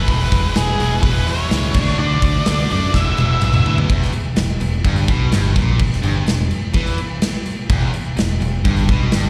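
Heard live through a venue's PA with little reverb, this swaggering, driving classic rock excerpt at 126 BPM pairs a dark, fuzzy octave-fuzz lead guitar melody that plays only until 3.8 seconds with two bright, picked, overdriven rhythm guitars riffing in the background, one carrying slapback echo, over an up-front growling fingered bass and a punchy, polished big rock drum kit whose fill from 2.9 seconds leads into the second section, while a jingly tambourine sits very quiet, close and dry.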